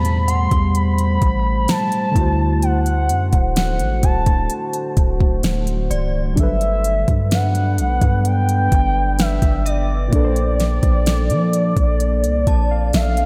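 A soft electronic kick, fat snare and smooth hats open this late-night, sensual contemporary R&B excerpt together with a deep, mellow 808-style bass, a moody ambient pad with slow-blooming chords and built-in reverb, and muted, felt-like synth keys with chorus that add a short fill from 12.0 s. Over the chords Am9, D7, Gmaj7 and Bbmaj7, a smooth, detuned lead glides between notes with vibrato, chorus and analog delay. A faint, inharmonic FM chime rings in the background from 0.3 s through ensemble chorus, phaser and delay, all set in a dreamy, lush hall reverb.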